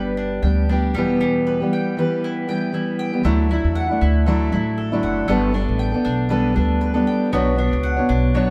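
The recording has the close, natural sound of a small room, with a moderate reverb around a trio playing live together. In this short excerpt of acoustic pop, heartfelt and sunny, a fingerpicked steel-string acoustic guitar carries the accompaniment with a full-bodied jumbo tone, sitting up front alongside a woody, thumpy pizzicato upright bass. A picked mandolin adds round, double-string arpeggios further back in the mix. The tempo is 117 BPM in 4/4 with a light swing on the sixteenths, in D major. The harmony moves from G to Em, then opens into a second passage at 3.2 seconds on add9 chords, Dadd9, Gadd9 and Bmadd9, with all three instruments playing throughout.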